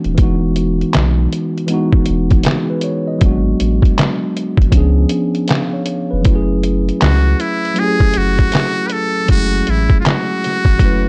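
A mellow tine electric piano anchors this melancholic, nostalgic lo-fi hip hop passage, cut from a longer piece, its clean tone heard through built-in speakers and colored by cassette tape, laying down chords from Emaj9 through G#m7b5 and C#7b9 to F#m9 in F# minor. Beneath it from the very start, a deep, round dub sub bass with a fast attack and sustained notes adds transformer saturation, while a sampler-style trip hop drum kit sits up front at 79 BPM in 4/4 with a swung 16th-note feel. The drums sound compressed, pitched down and muffled, with a thumpy kick, a medium-tuned snare, hi-hat and handclaps. At 7.0 seconds a trumpet with a metal mute enters for a close-miked jazz solo, brilliant yet buzzy and thin, with breathy scooped notes and light vibrato. The dry, gritty hardware sound carries little reverb, and its cassette character rolls off everything above 10.8 kHz for a hazy, nostalgic finish.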